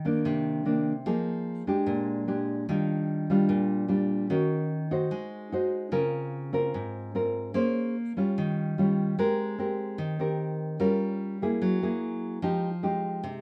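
Light reverb surrounds a warm, full-bodied, up-front nylon-string guitar, its thumb-plucked tone and finger squeak lending character to the classical playing. This sunny, romantic bossa nova passage, cut from a longer piece, moves at 148 BPM in Eb major, with the guitar playing alone throughout and ranging from Ab2 to C5. Lush extended chords such as Cm9, Ebmaj9, Abmaj9 and Gb9 drift through two similar phrases, the second beginning at 5.9 seconds.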